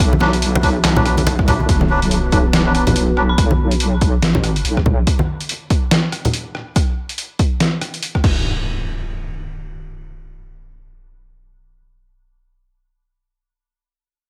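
Dark and brooding, this deep dubstep excerpt moves at 142 BPM in a half-time feel with a swung sixteenth lilt, set in B minor. It opens on a drop, with a punchy, overdriven electronic kick and a gritty, pitched-down, sampler-style trip hop kit of snare, hi-hat, rim click, handclaps and crash, both sitting up front. Beneath them, a deep, saturated wobble bass with a mellow square-and-sine tone and chorus holds the low end. A moody, detuned analog pad lingers in the background with chorus and phaser. Close, dry congas with a thin-skinned brightness are thrown into dub echo, and a reedy, nasal melodica plays filtered stabs from 0.2 to 3.2 seconds. An electronic impact lands at 1.7 seconds as the harmony shifts and a filter sweep moves across the pad, an eerie, inharmonic FM bell flickers briefly on a high B, and a final impact trails into an open, reverb-soaked haze after the rest falls away at 8.3 seconds.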